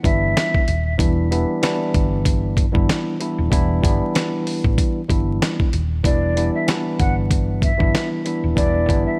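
Dark and moody, this boom-bap hip-hop excerpt sits at 95 BPM in 4/4 with a loose sixteenth-note swing, resting on an Em7 chord in E minor. A dusty, sampler-style drum kit sits up front, compressed and gritty, with a thumpy kick, a fat snare and hi-hat. Beneath it, a round, hollow-body fingered electric bass supplies a dark, amped low end. A bright tine electric piano carries the accompaniment throughout, clean and forward as if heard through its built-in speakers. An airy jazz flute with vibrato, chiff and rolled-off highs takes the melody with a touch of delay, sounding briefly at the start before returning from 6.1 seconds as the second section begins. Vinyl crackle and digital ambience lend the whole track a worn, late-night texture.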